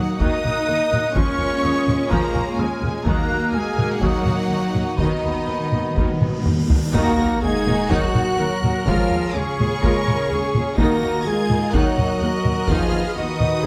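Epic and heroic, this excerpt from a cinematic orchestral film score drives along at 125 BPM in Eb minor. A clear, distant violin section carries the melody over a pure, soft-attacked flute ensemble and a second, focused violin line, while rich violas, cellos and double basses give lush body, mellow horns hold chords and a dark trumpet section adds stabs. A close, dry taiko ensemble pounds throughout, round timpani build a fill from 5.0 seconds, and a huge, bright cymbal swell with sub drop lands an impact at 6.9 seconds, all set in a moderate scoring-stage reverb.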